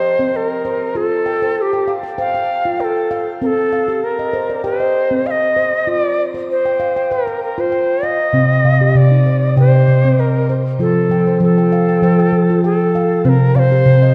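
Hypnotic and meditative, this short world excerpt moves at a straight 98 BPM in 4/4 and sits in C dorian, gently rocking between C minor and F chords. A handpan carries the arpeggios throughout, its nitrided steel tone dark, smooth and ringing, with sharp finger strokes sounding up front through shimmer reverb and delay. Alongside it, a reedy Native American-style cedar flute sings the melody, its wooden, airy voice shaped by vibrato, tongued notes and rolled-off highs, and dressed in its own shimmer reverb. Both parts play together from the first moment to the close at 14.1 seconds. The whole is set in a wet recital hall reverb with a touch of small-room ambience, lending the calm phrases a spacious glow.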